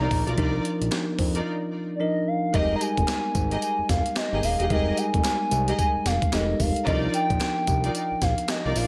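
A hollow, woody synth lead with a clarinet-like tone carries the melody from the start, its soft attack and gentle vibrato thickened by chorus, in this confident, slick new jack swing excerpt cut from a longer R&B piece. Underneath, a fat, saturated analog bass built from detuned sawtooth and square waves holds the low end, while a bell-like tine electric piano adds clean, bright accompaniment. A lush studio string section, bowed with vibrato and portamento, punctuates the groove with stabs. Up front, a gritty, compressed breakbeat-style drum kit of thumpy kick, medium-tuned snare, hi-hat and tambourine, carrying gated reverb, enters at 0.1 seconds, with a distant group handclap from a large room tucked in the background from 0.9 seconds. Set at 111 BPM in 4/4 with a swung sixteenth-note feel in F dorian, the harmony moves from Cm11 to Fm11 at 2.5 seconds and back to Cm11 at 6.9 seconds, all inside a light reverb.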